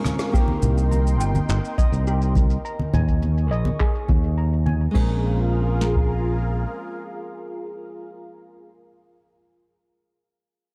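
Wistful and warm, this short sunset chillout passage opens on a brief drum fill and band accent before settling over Cm7, Eb7sus4 and Bbm7 chords. A deep, up-front analog rhythm box and a growly fingered electric bass, which enters at 0.6 s and carries a filter sweep, anchor the groove, while a rolled-off brush drum kit, hard-handed congas in the background and a shimmering, dry steel pan playing arpeggios through tape echo fill out the rhythm. A fingerpicked nylon-string guitar with audible finger squeak and tape echo offers accompaniment beneath a lush, detuned unison pad with chorus and phaser, and the production sits in a dark, small room ambience.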